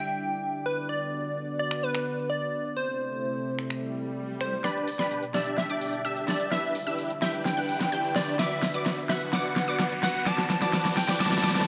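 A moderate digital ambience, like a scoring stage with a reverb tail of 1.9 s, surrounds this uplifting, euphoric snippet of festival progressive house, cut from a longer piece and moving at 128 BPM in a straight 4/4 in G major. From the first moment, a punchy, catchy square-wave lead with delay carries the melody up front, over a lush, thick pad of warbling, vintage chords treated with chorus, moving through Em7, Bm and Am. At 1.7 s a big-room dance drum kit arrives, electronic and overdriven, with a huge snare, metallic hi-hats, finger snaps and shaker. A background swell and riser enters at 3.9 s. At 4.6 s the build-up begins: the drums play a fill, the pad takes on a filter sweep, a dense, compressed supersaw riff joins through a low-pass filter, and a bright, decaying unison pluck with delay spins high arpeggios in the background as the chords turn to G, Em7, Bm and finally Amadd9.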